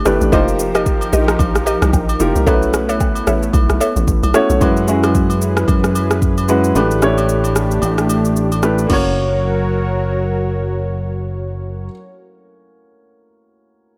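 Amapiano with a relaxed feel, as an intimate grand piano with audible action noise and a smooth, detuned sawtooth pad with sidechain pumping and chorus carry the suspended ninth chords, while an up-front, hollow, bouncy log drum bass and a woody, mallet-like synth pluck with chorus and delay, set in the background, play until a dark, round fingered electric bass enters at 4.6 s, and an up-front electronic afro-pop kit with deep kick, rim click, shaker and crash plays alongside agogo bells and woodblock until about 9.0 s.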